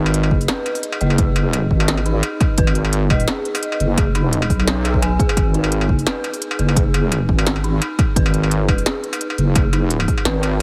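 Heavily compressed with a radio-like sound in a digital ambience, this dark, spacious half-time drum and bass fragment is cut from a longer piece and stays on a single minor chord with a light swing. A deep, soft, mellow wobble bass sits up front with chorus and tube saturation, while an eerie, inharmonic FM bell plays decaying arpeggios treated with chorus, phaser and delay. An industrial kit of clanging snare, crisp hi-hats and struck metal enters at 0.1 seconds, and a heavy electronic kick joins at 0.3 seconds, both tape-warm and re-recorded in a large room.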